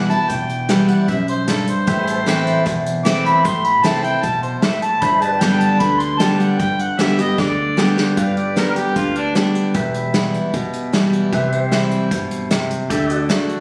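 A mellow harmonica solo with scooped notes and light vibrato opens this easygoing, sunny honky-tonk country tune in G major at 152 BPM, riding up front over a bright, full-bodied picked acoustic guitar, clean fingerpicked pedal steel chords with volume swells, a woody pizzicato upright bass in the background and an acoustic drum kit played with bundle sticks and a punchy kick, whose fill at 7.4 seconds leads into a new section where the harmonica drops out at 9.7 seconds, all set in a moderate recital-hall reverb.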